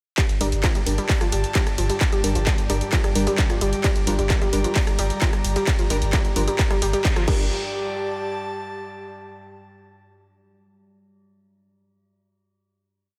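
A distorted, overdriven kick sits up front in this intense, industrial peak-time techno piece in G minor at 131 BPM, driving four-on-the-floor from 0.2 seconds beside tape-warm analog drum-machine hats, claps, rim clicks, ride and crash, a very quiet gritty looped breakbeat, a round sub bass rumbling between the kicks, a nasal wave-folded pluck repeating a 5-step loop that drifts against the bar, crisp detuned wavetable stabs in syncopated parallel chords, an eerie warbling metallic drone entering at 1.5 seconds, and an airy breathy pad with slowly shifting chords that carries on past the drop into a final G5 note at 7.5 seconds, all in light reverb.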